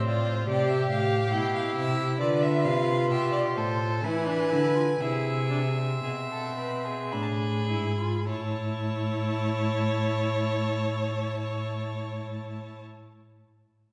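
All four bowed strings of a baroque-style fugue begin together at 0.0 s: a clear, smooth first violin carrying the melody high above, a focused second violin close behind on the inner line, a warm viola with an even, smooth top filling the accompaniment, and an expressive, full-bodied cello sitting up front on the bass with soft attacks and sliding portamento. The mood is contemplative yet driving, in A minor and straight 4/4, with the quartet tuned slightly low to A4 = 438 Hz. The tempo sits between 50 and 72 BPM and slows through the opening stretch until 8.3 s, as the harmony moves from A minor to E7. At 8.3 s a new section arrives on an A major chord, and all four players continue until 12.8 s. Each part is a single player with vibrato, heard from further back in a reverberant recital hall whose 1.7-second decay lends the sound a spacious halo, and the passage is cut from a longer piece.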